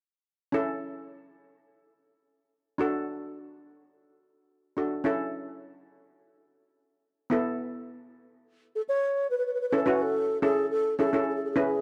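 A mellow wooden-headed alto flute carries the melody in this carefree, sunny calypso fragment, cut from a longer piece, entering at 8.8 seconds with a tongued, straight tone that sounds unsteady and distant. Beneath it, a steel pan of cello pans struck with hard rubber sticks plays the accompaniment from 0.5 seconds onward, its sound metallic, shimmering and bright, placed up front with an airy edge. The tune sits in A major at 106 BPM in a straight 4/4, moving through A, D, A/C# and Esus4 before settling back on A as a new section begins at 9.6 seconds. The recording is dry and close, with little reverb, in a 1970s-style studio sound.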